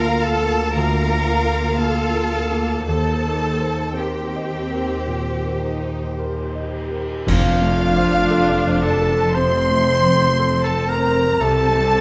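In a rubato 4/4 around 54-59 BPM, this uplifting, moving F major film cue opens with a rich, vibrato-laden violin section carrying the melody over a smooth second violin line, lush violas and cellos, a double bass section, a deep-bassed grand piano in the background and a very quiet, ringing thumb-plucked harp playing arpeggios. At 2.9 seconds a dark cymbal swell, clash cymbals and concert bass drum join. At 7.3 seconds the full ensemble lands a shared accent as an airy flute section, a clear solo oboe, mellow French horns holding sustained chords and round, soft-mallet timpani enter, all within a moderate scoring-stage reverb.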